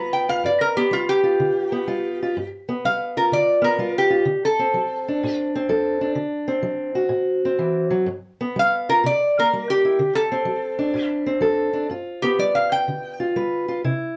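A moderate studio reverb gives this short cut from a longer acoustic country blues piece a close, roomy sound, with both guitars up front. At 125 BPM in 4/4 with a strong swing on the eighth notes, the groove feels soulful and swaggering, sitting in G mixolydian over a G7, D7 and C7 progression. A fingerpicked steel-string parlour guitar carries the accompaniment throughout, its old strings giving a dark, woody, boxy tone. Over it, a lap resonator guitar played with a steel bar and fingerpicks takes the melody as a slide solo, bright, metallic and nasal. The resonator drops out at 5.4 seconds, leaving the parlour guitar alone, then returns at 8.6 seconds and carries on until 13.2 seconds.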